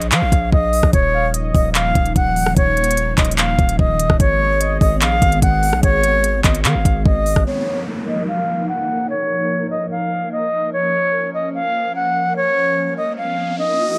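Hard-hitting and eerie, this half-time trap cut pairs an airy, reedy concert flute melody with a distorted, heavy 808-style bass and a trap kit of knocking kick, crisp hats, handclaps and rim clicks, all sitting up front in a dry mix. A hollow, warbling pad with a vintage, detuned tone enters at 0.9 seconds beneath the flute, and a very quiet, velvety synth lead adds brief second-line touches. At 7.5 seconds the bass and drums stop, leaving flute and pad under a filter sweep with downlifter and riser effects, the riser arriving at 13.0 seconds.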